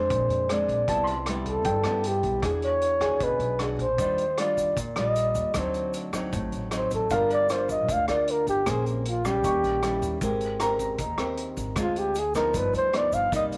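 A small room's light reverb frames this melancholic, smooth bossa nova excerpt, which moves at 154 BPM in a straight 4/4. Up front, a dark, breathy flugelhorn carries the solo melody with vibrato, soft attacks and scooped notes, close-miked and whispered in a jazz style. Beside it, a classical nylon-string guitar is fingerpicked throughout, while a woody, thumpy pizzicato upright bass, tinged by transformer saturation, anchors the low end. A vintage drum kit with a punchy kick, gritty saturation and a rolled-off top plays hi-hat, kick and rim click, and a grainy, bright egg shaker joins softly in the background at 4.0 s. A warm baby grand piano, intimate with audible action noise and short sustain, adds high accompaniment in two passages, dropping out and returning at 7.1 s. The harmony drifts through rich extended chords such as Ebmaj9, D7b9 and Bbm9 before settling on G7b13.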